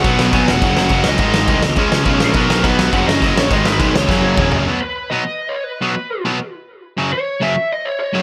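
This rowdy, rebellious punk rock excerpt in F# major at 207 BPM bursts in with a fat-snared, punchy-kicked indie drum kit up front, roomy, with dark cymbals and a rolled-off top. Underneath it sit a growly fuzz bass, two bright, picked distorted electric guitars and a double-tracked high-gain guitar churning out riffs, while a lo-fi lead guitar through a small cranked amp carries the melody with overdrive and digital delay. After a drum fill at 4.1 seconds, the drums stop at 4.6 seconds and the bass and heavy guitar at 4.7, as the two riffing guitars and the lead push on in half time in a dry mix.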